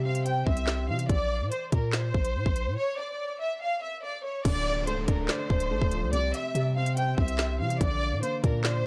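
This dry, gritty recording carries little reverb, giving a short drill cut an ominous, cold mood and a close, raw presence. Up front, a lush symphonic violin section carries the melody, bowed with vibrato, a focused tone and a smooth top, trailed by tape echo. Beneath it, a long, deep 808-style bass with a sine-like body and fast attack decays under the half-time groove of an electronic kit built from a hard-clipped kick, woody snare, crisp hats, handclaps and crash cymbal. A dark, worn baby grand adds boxy, intimate accompaniment with audible action noise and long sustain, heard briefly at the start over a C chord. After a break from 2.8 seconds, the piano returns at 4.5 seconds for the second section, where a very quiet electronic downlifter also sits in the background.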